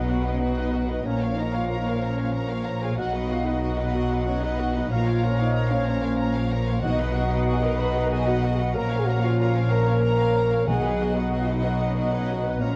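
Heroic and adventurous, this cinematic orchestral passage, cut from a longer piece, moves in a straight 12/8 over chords that alternate between B major and A-sharp minor. A warm, lush violin section carries the melody with soft-attacked, expressive vibrato, while a bright flute group, a mellow clarinet, a distant oboe and a second, richer violin section add supporting lines. Clear violas fill in the accompaniment, and a roomy French horn section joins a vintage-toned trombone section in sustained chords. Underneath, cellos and an up-front double bass section anchor the bass with smooth, even bowing. Timpani struck with hard mallets punctuate the passage at 6.8 and 10.7 seconds. The whole sits in a moderate scoring-stage reverb and carries the worn, warbling pitch drift of old cassette tape.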